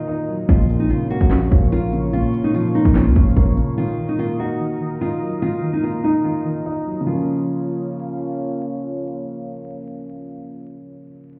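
Heard muffled as if through a wall, with club reverb, vinyl crackle and a light digital ambience, this eerie, brooding trap fragment moves at 146 BPM in a half-time feel in Bb minor, shifting from Bbm to Ebm. A bright, fingerpicked nylon-string guitar carries the filtered melody until 8.3 seconds over a boxy, mellow grand piano and a warbling, detuned tape-like pad holding nostalgic sustained chords. At 0.5 seconds a saturated, aggressive 808-style bass and a trap kit of hard-clipped kick, sharp snare, crisp hi-hats and handclaps punch in up front, falling away by 3.7 seconds.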